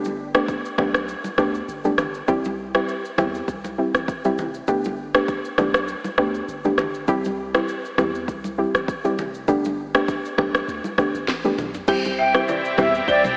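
Soaked in lush hall reverb with a dreamy, AM-radio haze, this joyful, breezy afrobeats excerpt in C major moves at 100 BPM with a gentle 16th-note swing, as a soft, round pluck with chorus rocks between Gadd9 and C over a deep, punchy sub bass, an up-front electronic drum kit with a deep kick and sharp snare, and bright, damped congas in the background. After a drum fill at 11.3 seconds, a thick, detuned unison pad and a woody, buzzing balafon riff enter together at 11.9 seconds. A breathy, close-miked concert flute melody follows at 12.2 seconds before the cut.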